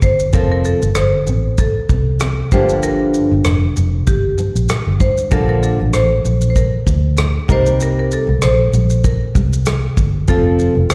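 A bright, woody marimba struck with hard mallets carries the melody in this sunny, easy-going acoustic pop excerpt, its close-miked rosewood bars sounding dry and percussive behind a touch of slapback echo. Underneath, a vintage muted fingered electric bass sits up front with a dark, round, foam-muted tone that feels amped and punchy. A natural country drum kit keeps a relaxed 4/4 with a light sixteenth-note swing, pairing a punchy kick with rim click and shaker in a small-room sound. From 0.3 seconds a warm, full-bodied, fingerpicked nylon-string guitar adds deep classical accompaniment, also touched by slapback echo, as the harmony moves through F, Gm7, Bbmaj7 and Cm7 before returning to F. The whole performance comes across like a live gig heard through the venue's PA, with light reverb, small room ambience and the reverb of a recital hall.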